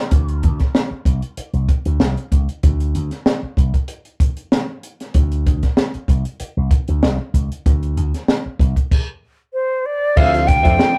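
Funk at 96 BPM with a sly, driving mood, this rough rehearsal-room clip rides a bright, punchy slap bass through an envelope filter and a dark, compact cocktail kit with a high-tuned snare until a stop at 8.9 s, after which an airy flute with tape echo enters at 9.5 s and a hollow-body guitar with harmonic tremolo and key-clicking tonewheel organ stabs through a slow rotary speaker arrive on the move from Csus2 to Dm9 at 10.2 s, with a distant, very quiet horn section touching in at the close.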